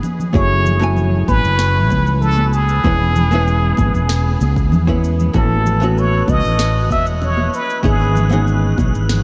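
A plunger-muted trumpet leads this wistful, relaxed sunset chillout excerpt at 96 BPM in F# dorian, its brilliant, punchy jazz-style solo full of wah-wah and vibrato and trailed by a diffuse ambient delay. Underneath, a dark, clean hollow-body guitar moves through F#m9, E6, A69 and C#m9/G#, while a round, up-front fretless bass, a deep tape-warm electronic kick, a sharp electronic snare with congas and shaker, and very quiet high-tuned acoustic congas keep a straight 4/4 pulse. From 6.0 seconds an airy, breathy wind-like texture drifts in the background, and the whole dreamy mix is soaked in a huge reverb.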